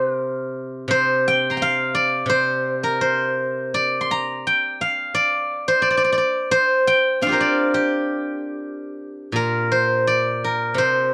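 Contemplative and longing, this brief excerpt of Chinese traditional solo plucked-string music features a steel-string zither, played with fingerpicks, up front and alone from start to finish, its silvery, ringing tone spanning low to high registers in a rubato 2/4 flow with light reverb, shifting into a new section at 9.3 seconds.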